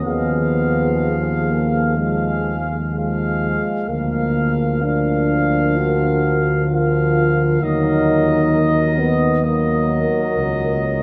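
A dark French horn section, a mellow, soft-edged euphonium and a warm trombone open this solemn, melancholic hymn-like passage for brass band in Eb minor, joined almost at once by a distant, roomy trumpet section carrying the high melody and a smooth-topped tuba up front in the bass. Moving slowly and freely at 61-67 BPM in 4/4, the harmony passes from Fm7b5/Eb through Bb/D to settle on Ebm at 7.6 seconds, with light vibrato in the horns, euphonium and trombone. A long, wet cathedral reverb surrounds the ensemble, and the euphonium stops at 10.3 seconds, just before this fragment of a longer piece ends.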